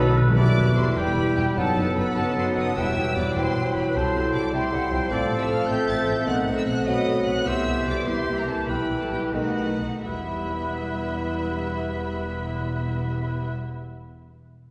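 Classical symphonic music in a dramatic, restless romantic vein, this fast 6/8 passage cut from a longer piece moves with rubato and slows from 6.9 to 10.0 seconds before a new section arrives. Lush, distant violins carry the vibrato-rich melody above a bright, close-miked flute group, a second background violin line, a mellow clarinet and a roomy oboe, while a quiet viola section, a bassoon and a background French horn section fill out the harmony over bowed cellos and an expressive double bass section. Hard-mallet timpani open with a brief fill, strike again near 2.8 seconds and return at 10.0 seconds, all set in a concert hall's reverberant wash.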